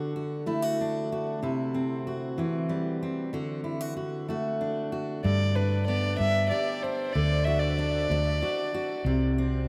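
A gentle, straight 6/8 sway carries this peaceful folk fragment, opening with a bright, full-bodied fingerpicked steel-string acoustic guitar moving between D and C chords on its own. At 5.2 seconds a reedy, close fiddle with an airy bow and gut-string tone takes a solo over G and D, joined by a dark, round hollow-body electric bass sitting up front beneath it. A huge, wet reverb places the whole piece in a vast, echoing space.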